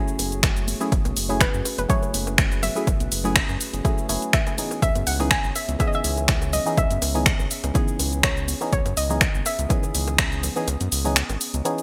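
Deep and smooth, this short deep house excerpt from a longer piece moves with a slight swing and a bright, 1980s-style digital sheen, set in light reverb and digital ambience. A soft, round pluck carries the melody through chorus and digital delay, while a moody analog pad sits in the background with slow-attack chords, detuned and carrying a gritty 12-bit sampler texture and sidechain pumping. A hollow, organ-like stab, mellow and percussive, adds stabs colored by chorus, phaser, delay and pumping, over a round analog bass that is warm and deep with its own sidechain pumping. The overdriven drum kit of finger snaps, hi-hat and shaker, wrapped in gated reverb, sits up front with a punchy electronic kick that enters at 0.4 seconds, and very quiet bongos and congas fill in underneath. The harmony shifts from F#m9 to C#m9 at 4.8 seconds, and the kick drops out from 10.7 seconds to the end.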